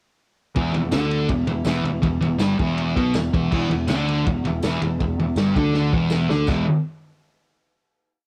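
Swaggering and raw, this short garage rock piece charges along at 162 BPM in a straight 4/4, built on an E5 power chord. A thick, double-tracked fuzz guitar sits up front with a picked octave riff, its distorted tone carrying the grain of cassette tape. Beneath it, a growly, punchy fretless electric bass with tube saturation doubles the riff in a quarter-note figure, while a vintage acoustic drum kit with a punchy kick and medium-tuned snare drives a garage stomp groove across crash and ride cymbals. A jingly, close and dry tambourine joins at 0.9 seconds and stays in the background. The riff runs until a drum fill at 5.7 seconds leads into a final chord that rings out from 6.5 to 7.9 seconds, all captured with the small-room ambience of a home cassette recording.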